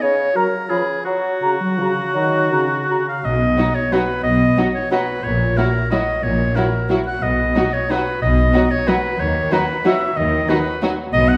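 Festive and elegant, this fragment of an orchestral ballroom waltz in 3/4 sways with rubato at roughly 154-198 BPM, opening in F# major with a close-miked oboe up front over a soft-edged bassoon, a mellow clarinet, an airy, hollow flute section and a tight French horn section holding chords. At 3.3 s the music turns to B major and bowed strings take over from the other winds: a rich double bass section and a smooth cello section carry the bass, a viola section adds expressive portamento, and two focused, lush violin sections sit in the background, one on the melody and one on a second line, while the oboe carries on to the end. A recital hall's reverb places the orchestra further back in the room.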